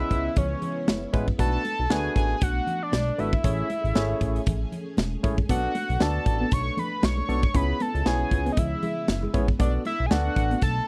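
A dry, close recording in a 1970s studio style, with little reverb, frames this short cut of early-eighties boogie funk, and its mood is slick and late-night with a swung sixteenth-note feel. Up front, a fat analog lead carries the melody in a mellow sawtooth and square tone with a sub octave, vibrato and a slapback echo, over a glossy, dark synth bass whose pulse-width movement and chorus keep it evolving. A barky tine electric piano, lightly overdriven, fills in the accompaniment, while a lush vintage string machine holds slow-attack chords in the background with ensemble chorus. The polished acoustic drum kit sits forward with a punchy kick, a medium-tuned snare and hi-hat, and very quiet congas with soft hands add a bright, thin-skinned texture beneath. At 5.5 s, a clean, compressed electric guitar enters in the background with a riff, softened by a lush chorus, as the harmony moves through minor-seventh and major-seventh chords.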